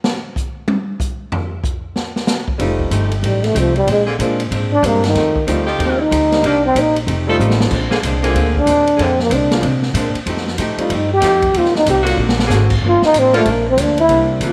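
A breathy, whispered trombone carries the melody in this joyful, energetic big-band swing, taking a dark, intimate solo with light vibrato and a soft attack that sits up front yet sounds distant and roomy. The drum kit opens the passage alone with a short solo, its boomy kick and medium-tuned snare heard in a natural studio room, before upright bass, piano, and archtop guitar join at 2.6 seconds. The pizzicato bass is woody and thumpy, the concert grand adds clear, short-sustained accompaniment with a vintage character, and the hollow-body electric guitar comps in a clean, compressed, picked tone. A warm saxophone section lays sustained, vibrato-tinged chords beneath the trombone in two stretches, and the drums punctuate the solo with brief fills around 7.4 and 12.2 seconds. A moderate echo-chamber reverb gives the whole band a spacious glow in this passage cut from a longer piece.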